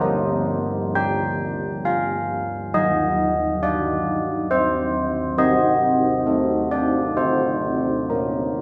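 Classical tune for church bells in G minor, a wintry and solemn piece in a slow 3/4 at 67 BPM, cut from a longer work. A set of old church bells plays alone from 0.0 to 8.6 seconds, their bronze tone carrying a minor-third overtone and a beating shimmer, softened by a padded clapper and placed up front. The harmony moves from G minor to C minor around 5.4 seconds, with the ringing sound settling into the wet reverb of a recital hall.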